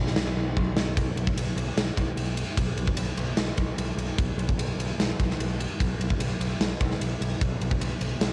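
A straight 4/4 pulse at 149 BPM drives this hard rock excerpt, cut from a longer piece, with a driving, menacing mood. A huge arena drum kit enters at 0.1 s, sitting up front with a punchy kick, a medium-tuned snare, bright cymbals across crash and ride, and a pumping hall-like room, all carrying a cassette tape character. A quick drum fill from 0.6 to 1.0 s leads into the main section, which runs from 1.0 s to the end at 8.3 s. Underneath, a growling picked electric bass plays from the very start, reaching down to B1 with a direct, amped tone that is bright and overdriven. The whole take has the feel of a home recording on cassette, with light reverb around the two parts.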